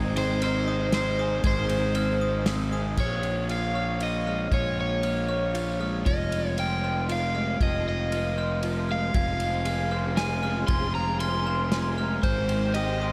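Post-rock in 3/4 with a cinematic, brooding mood, this passage is cut from a longer piece and soaked in a huge ambient reverb that gives the mix a dreamy haze. Up front, a growly fuzz bass holds down the low end while an overdriven semi-hollow guitar carries the melody with a picked, hollow-body tone and delay trailing its lines. Behind them, a dark, slightly broken-up electric guitar through a small old amp plays compressed, lo-fi arpeggios with ensemble chorus and delay. A glockenspiel struck with brass mallets adds sparkling, bell-like arpeggios high above, also echoed by delay. A loose indie drum kit with a tight kick, medium-tuned snare, ride and crash sounds small-roomed and rolled-off at the top. A distant, lush string section holds bowed chords with vibrato in the background, dropping out at 3.0 seconds and returning at 9.2 seconds as the harmony moves through minor-seventh and major-seventh chords.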